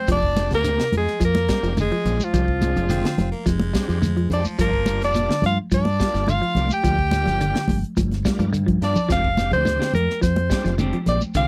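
A straight 4/4 afrobeat groove at 106 BPM drives this funky excerpt in F dorian, anchored by a tight funk drum kit with a high-tuned snare and tight kick, a round, dark fingered electric bass, grainy shekere and high-tuned congas with a thick-skinned, soft-handed sound. Up front, a bright, forceful alto saxophone carries the melody with scooped notes and vibrato, while a raspy, gritty tenor saxophone plays a second line beneath it until 9.1 seconds, joined briefly by an edgy, close-miked baritone saxophone from 2.9 to 5.4 seconds. A dark, hollow-body semi-hollow electric guitar plays fingered arpeggios with spring reverb, and a shouting tonewheel organ sits in the background with chorus vibrato and a fast rotary speaker. The harmony moves from Fm69 to Gm7 at 4.6 seconds and back, and after a drum fill a clean electric guitar adds picked stabs with spring reverb and slapback echo. The sound is dry and close, in the manner of a 1970s studio recording.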